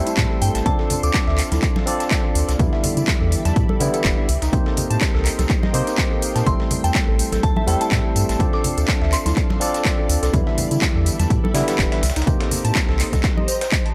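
A dry, gritty deep house excerpt opens on a silky string machine pad and barky electric piano stabs, soon joined by a round sub bass, a punchy overdriven kick, metallic house hats, claps and tambourine, a fat-snared sampler-style kit, hard-handed congas, warbling lo-fi pluck arpeggios and a pure FM bell melody that returns around 6.5 seconds, with the strings, electric piano, pluck and sub bass pumping to a moody swing over Am7, Dm7, Em7 and Cm7.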